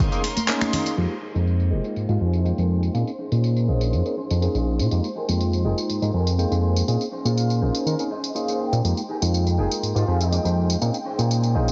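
Through a heavily compressed, radio-like haze with light digital ambience, this nostalgic, groovy filtered disco house excerpt in F minor at 122 BPM rides a filter sweep from 1.0 seconds over a fat, nasal analog bass up front, a gritty sampler-style soul drum kit with snaps, claps, hi-hat, tambourine and crash, brief dry congas and tambourine at the start, a barky, lightly overdriven tine electric piano comping Bbm11 and Fm11 chords through phaser, a twangy clean electric guitar riff with a fill at 7.9 seconds, smooth background violin chords, and a distant, roomy horn section melody with digital delay that returns at 5.6 seconds.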